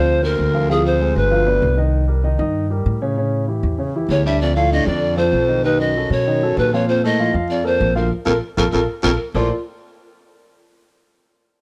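Jazz in a lively, danceable straight four, this excerpt sets a breathy bamboo pan flute with a tongued chiff and slapback echo on the melody over a clear, vibrato-rich baritone saxophone second line, both dropping out at 1.8 seconds and returning at 4.1 seconds, while a warm, deep-bassed concert grand piano and a woody, dark pizzicato upright bass carry on throughout, the band hitting an accent at 8.1 seconds in a dry, close 1970s-style studio sound.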